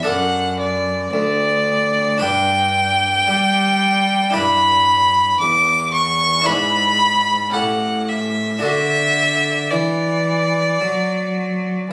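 A baroque-style classical sonata movement with continuo, this short excerpt cut from a longer piece moves at a serene, dance-like 56 BPM in a straight 4/4, beginning in G major and turning toward D major from 4.3 s. A single bowed violin carries the melody between D5 and D6, sitting close and up front with a rich, smooth and even tone coloured by vibrato. Beneath it, one cellist supplies the bass line from D2 to G3, bowed with a clear, even sound and light vibrato. An Italian-style harpsichord with one set of strings fills in the accompaniment from D2 to B4, its plucked tone round and warm. The harmony passes through G, Em7/G, E7/G# and A7 before settling on D at 8.6 s. Captured on a phone in the room and then given studio reverb and compression, the recording has a light reverberant sheen.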